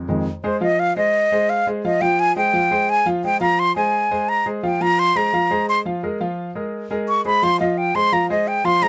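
Jazz with a fiery, driving feel, in which a breathy concert flute plays a soft-attacked, straight-toned solo from 0.4 seconds, up front over an intimate concert grand piano whose deep bass, short sustain and audible action noise come through the close, dry sound of this fragment of a longer piece.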